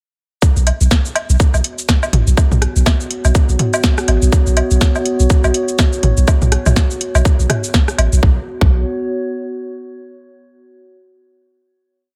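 This sparse, clinical minimal techno piece opens at 0.4 s with a tight, up-front four-on-the-floor electronic kick, a booming analog drum machine's tonal snare, metallic closed hats and cabasa, and a warbling, nostalgic tape-like pad with chorus, reverb and sidechain pumping. A deep, punchy sine sub bass rolls in staccato, and a layered garage kit adds dub-echoed rim clicks, low toms and woodblock blips in cross rhythm. The drums and bass fall away by 8.8 s, leaving the pad's dark, detuned final chord to sustain until 10.1 s.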